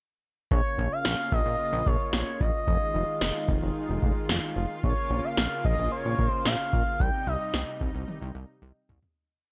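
A dry, close-sounding synth-pop miniature at 111 BPM in Bb dorian, melancholic and nocturnal, where an electro analog drum machine with a deep kick, punchy snare and toms drives a straight beat under a glossy, evolving sequenced synth bass, a lush, thick, airy detuned pad with chorus holding chords from Bbm through Fm7 to Cm, and a smooth, nasal synth lead with vibrato, chorus and analog delay singing motif-based phrases until 7.8 s, before a drum fill closes the fade-out at 9.2 s.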